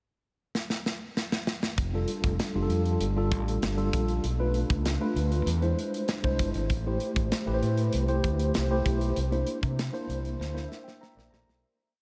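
Upbeat and urban, this polished 1980s jazz-funk pop piece moves at 97 BPM in F major, opening with a modern studio drum kit fill from 0.5 seconds before punchy overdriven fingered electric bass plays an agile syncopated line with chromatic approach notes and a mellow tine electric piano with subtle chorus adds syncopated drop2 chord stabs, grace notes and short fills over a crisp sixteenth-note groove, all soaked in dreamy, huge ambient reverb until the fade-out from 9.2 seconds.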